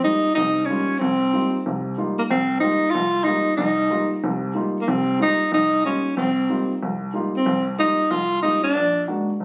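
Swinging eighth notes at 186 BPM in 4/4 drive this brief, intense yet cool jazz excerpt, with a baby grand piano comping from low bass to middle register under a long F9sus4 harmony that shifts to Bbaug7 at 8.7 seconds. Up front and close-miked, a warm tenor saxophone carries the melody in its low-middle range with a subtone, soft attack and light vibrato, stopping at 9.0 seconds while the present piano rings on to 9.4 seconds. A modest club reverb and compression give the sound a slightly roomy, phone-captured feel.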